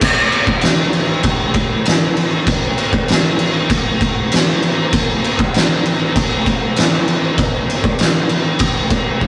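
A straight, mid-tempo metal beat in 4/4 is played on an oversized, low-tuned acoustic drum kit, with boomy kick, fat snare and dark crash cymbal sitting up front for the full 9.3 seconds of this heavy, ominous fragment from a longer piece. The kit sounds muffled and gritty, its saturated tone rolled off at the top. The dry, rough rehearsal-room recording gives it a lo-fi weight.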